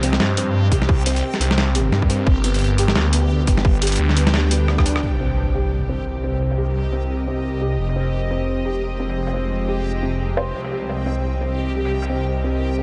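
Half-time drum and bass with a cinematic, spacious mood, built on a tense, string-like drone, a muted felt upright piano playing mellow arpeggios, a swirling, thick phased saw bass up front, and a dreamy reversed texture. A gritty, pitched-down sampler-style kit supplies hi-hat, rim click and snare, while a hard-clipped, overdriven electronic kick drives the opening from 0.7 to 4.8 seconds. A drum fill and band accent lead into an electronic impact at 5.0 seconds, after which a filter sweeps across the piano as the chords move from Cm7 through Fm7.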